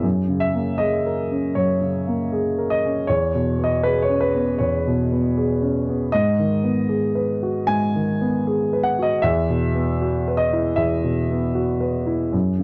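The rhythm moves freely in rubato, with a loose 4/4 pulse that bends and breathes beneath the phrases. This is an intimate, wistful piece of neoclassical minimalist piano, heard as a short passage cut from a longer work. A solo grand piano carries everything from 0.0 to 12.6 seconds, its warm, natural tone placed up front and spanning from E2 up to G#5. The harmony drifts through F#add9, C#m7/E and G#m7 before settling on Esus2 at 9.2 seconds. A light reverb surrounds the instrument, yet the sound stays dry and close, like a 1970s-style studio recording.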